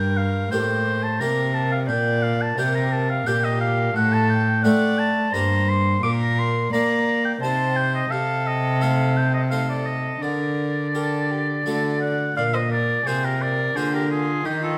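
Introspective and flowing, this baroque-style sonata movement with continuo moves at 86 BPM in a straight 3/4, set in G minor and cut from a longer piece. A bowed period-style violin with a gut-string tone carries the melody in a close, single-player voice, while a clear oboe with light vibrato and a soft attack sits up front on the second line, reaching higher into its range. Beneath them, an airy Flemish-style harpsichord with two sets of strings supplies plucked accompaniment. A rich, reedy cello, also up front, holds the bass. All four play throughout, framed by a moderate recital hall reverb, as the harmony travels from Gm through Bbadd9, Cm and Adim/C to a D chord at 11.7 s before a new passage opens on Bb7 at 12.4 s.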